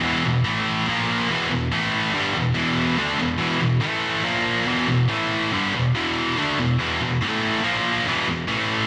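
A big arena sound drenched in a lush 2.0-second hall reverb frames this menacing, aggressive rock fragment at 142 BPM in a straight 4/4. A lone double-tracked electric guitar, bright, scooped and high-gain with distortion, sits up front for the full 8.9 seconds, its picked power chords cycling through E5, A5 and A#5 with E minor chords between. The part ranges from E2 to D4, and the brief cut from a longer piece feels like a tense, looming riff.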